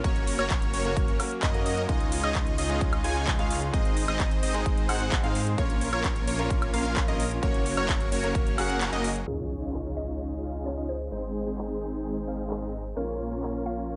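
This euphoric, uplifting festival progressive house clip opens mid-drop on a punchy, up-front electronic kick and a big-room dance kit of metallic hats, handclaps, woodblock and crash, driving huge, sidechain-pumped supersaw chords, a thick, chorused detuned saw bass and a catchy plucky unison lead arpeggio carrying tape echo. Beneath them sit a brilliant grand piano with audible action noise and a very quiet, lush unison pad, all moving through Gb, Dbadd9, Ab and Bbm. The kick stops at 8.4 seconds and the lead at 9.1, and at 9.3 seconds an electronic impact lands as a woody, warbling mallet-like FM pluck takes over the melody under light reverb.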